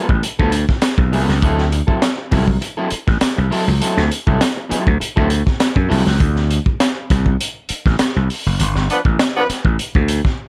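Energetic and playful, this straight 4/4 funk excerpt at 100 BPM in D mixolydian sits in a studio ambience, driven by a growly, overdriven slap bass up front and a crunchy breakbeat kit with a punchy kick, high-tuned snare and rolled-off top. A dark, slightly broken-up electric guitar plays fingered accompaniment over G9 and D9 chords until 6.1 seconds. A band accent lands at 8.6 seconds on Gsus2, and a warm horn section with vibrato and octave doubling enters briefly at 8.9 seconds.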